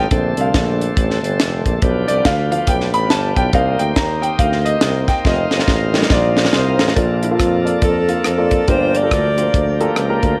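Heard through light small-room reverb, this jubilant, hopeful clip of swung uptempo gospel opens with a short-sustain grand piano solo over a shouting, lightly overdriven tonewheel organ with slow rotary speaker, a warm, scooped tuba bass with light vibrato and a dry, polished funk drum kit with a high-tuned snare whose fill runs from 5.3 seconds, before a breathy, close-miked alto saxophone takes the jazz-style melody at 7.2 seconds.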